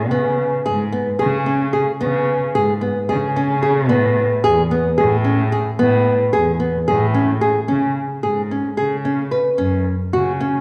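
Worn, warbling cassette tape with drifting pitch colors this short passage from a longer contemporary chamber piece, heard in a wet recital hall. A small, fingerpicked nylon-string guitar plays warm arpeggios up front in an uneven 7/8, while a single dark, woody cello bows a vibrato bass line beneath it. The hypnotic, pensive music moves into a new section at 7.7 seconds and runs to 10.6 seconds.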